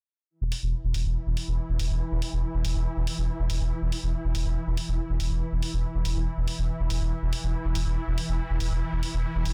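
A straight 4/4 pulse at 141 BPM drives this dark, intense slice of peak-time techno, tuned slightly flat to A4 = 435 Hz and cut from a longer piece, with an analog-flavoured electronic hi-hat ticking in at 0.5 s. A deep, thick, saturated sine sub bass holds E1 up front, its fast attack and low-pass filtering giving a sustained weight. Behind it, a swarming, tense drone swells in with a slow attack at 0.8 s and evolves between E3 and E4, its detuned unison sine tones granular within their own reverb over a dense, heavily limited master that is otherwise dry.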